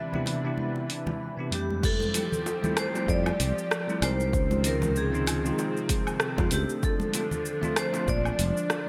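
Sunny and relaxed, this brief cut from a longer sunset chillout piece in F major moves at 96 BPM with a swung 16th-note feel, opening on a ringing vibraphone melody with fast motor vibrato and delay over a lush, detuned unison pad with chorus and a bell-like tine electric piano with digital delay. Congas and bongos sit in the background with hard hands while an overdriven deep house kit of hi-hat, rim click, cabasa, woodblock and crash, dressed in gated reverb, joins at 0.3 seconds, followed by a deep, overdriven electronic kick at 1.8 seconds as the chords shift from Cmaj9 to Fmaj9, Dbmaj9 and a rootless Bbmaj9. A growly, up-front fretless bass enters at 3.1 seconds, all within a bright 1980s-style digital production with light reverb.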